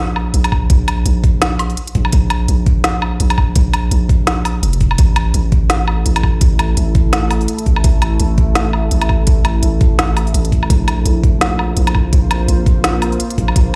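Tense and cinematic, this half-time drum and bass excerpt rides a swung sixteenth-note feel, with a deep, sine-toned 808-style bass sustaining long, decaying notes up front from the start and an electronic kit of woody snare, smooth hats and woodblock, anchored by a knocking, layered kick that sits loudest in the mix with small-room ambience. At 5.8 seconds a moody, detuned sawtooth pad with a sub octave fades in on slow-attack sustained chords, carrying chorus, built-in reverb and sidechain pumping. The whole track sounds as if played on a big sound system in a bare room, bathed in large studio reverb.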